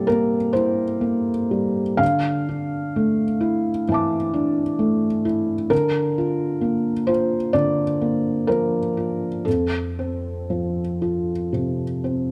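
Heard through close, detailed microphones and a light reverb, a felt-muted upright piano sits up front, its soft, dark tone carrying audible action noise that lends an intimate, vintage character. This is neoclassical minimalist piano in D minor, played solo at a slow, rubato 58-66 BPM in 4/4, with the instrument tuned to A4 = 439 Hz. The mood is wistful and intimate, the mellow voicing spanning F2 to D6. The harmony moves from C7 through Dmadd9 at 2.0 seconds, then Bb/D at 5.7 seconds, before settling on F at 9.5 seconds. Cut from a longer piece, this 12.3-second fragment holds to a single smooth, hushed passage.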